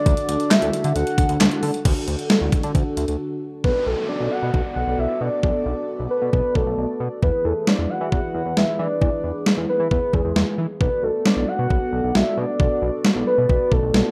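Synth-pop with a cool, nocturnal mood, cut from a longer piece: a round, full-bodied octave-layered synth lead carries the melody through chorus, phaser, tape echo and plate reverb over a shimmering, dark pulse-width pad holding sustained chords. A glossy, retro chorused synth bass with a plucky filter sits up front beside a clean 12-bit drum machine with a thumpy kick, medium-tuned snare, hi-hat, handclaps and crash, its sampler-style tone tape-warm and re-recorded in a large room. A brief break at 3.2 s gives way to a minor-leaning passage where an electronic downlifter sweeps through from 3.6 to 7.2 s, all within a rough home-demo mix in a small, reverberant room.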